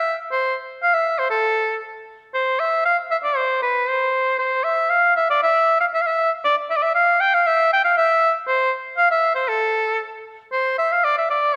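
A clear shawm sits up front in a moderate scoring-stage reverb with a 1.6-second decay, giving this short medieval excerpt an ancient, mysterious air. Playing alone from 0.0 to 11.6 seconds in a straight two-beat metre, the shawm carries a folk-style line between A4 and G5, its vibrato and smooth top colouring the tone. A repeated opening idea gives way to a new phrase near 10.5 seconds before the cut.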